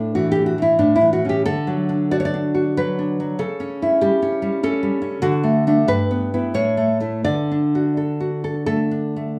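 A lone nylon-string guitar opens on an Asus4 chord, settling into A and then D in this short, sunny and tender romantic excerpt for solo classical guitar in 3/4, moving with a rubato feel between 76 and 99 BPM in D major. The fingerpicked guitar sits up front with a warm tone and a touch of slapback echo, ranging from G2 to D5 as it passes through A7/C#, Em/G and A before resolving to D at 7.2 seconds. Light reverb and a small room ambience surround the playing, and the passage breaks off at 9.4 seconds as a fragment of a longer piece.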